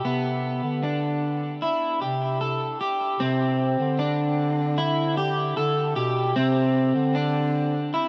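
An electric guitar at the edge of break-up opens this short dream pop passage, its picked arpeggios sounding slightly broken-up and bathed in a lush chorus and delay up front in the mix. Alongside it, a mellow bass clarinet carries the bass line in a classical style, sitting in its low register between B2 and D3. The mood is ethereal and blissful, moving at an unhurried 76 BPM in a straight 4/4 feel in C major. The harmony rests on Cmaj7 before shifting to Csus2 at 3.2 seconds, where the second section begins. A huge ambient reverb with a long, lingering tail surrounds the playing, giving the whole fragment, cut from a longer piece, a floating, suspended quality.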